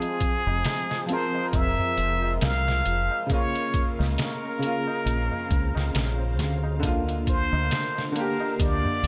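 Melancholic and dark, this short cut from a longer trip hop piece moves at a slow 68 BPM in 4/4 with a 16th-note swing, passing through Fm, Db6 and Bb/D. A plunger-muted trumpet carries the melody up front, its brilliant, wah-wah tone colored by vibrato, scooped notes and tape echo in a jazz-style solo. Beneath it, a clear, woody upright piano plays accompaniment with long sustain and a harmonic tremolo, while a string machine voicing cellos holds mellow, evolving chords further back with a slow attack and ensemble chorus. The gritty, pitched-down sampler-style drum kit sits up front with a thumpy kick and medium-tuned snare, joined from the start by a high-tuned, ringing tabla in the background that stops at 9.0 seconds. A deep, round fingered electric bass enters at 0.5 seconds, dark and direct, anchoring the low end. Light reverb and studio ambience frame the whole arrangement.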